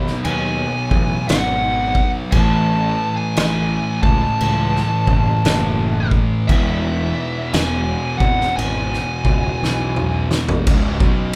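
Stoner and doom metal with a brooding, sludgy swing, played live in one room with light reverb: an oversized, low-tuned drum kit sits up front with dark cymbals, a fat snare and a punchy kick, while two dark, picked fuzz guitars grind out the riff in the background over a growly, overdriven fingered bass. An up-front fuzz lead guitar carries a warm, distorted melody until 10.2 seconds, and a very quiet, tense, bowed-like drone with vibrato holds sustained chords beneath. The harmony moves from B through A to E, and a drum fill from 9.6 seconds lands on a C#5 chord at 10.7 seconds as the excerpt is cut from a longer piece.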